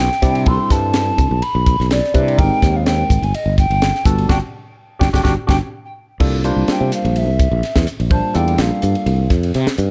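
A mellow, hollow flute carries the melody over a growly, punchy fretless bass from the very start, soon joined by a crisp fusion kit with a high-tuned snare and a barky, lightly overdriven electric piano coloured by phaser and plate reverb. This slick, soaring electric jazz fusion excerpt swings gently, with a band accent from 4.3 s and a drum fill joining it at 5.2 s. At 6.2 s the flute, airy with vibrato and a chiffy attack, launches into a solo over a dark, warm production.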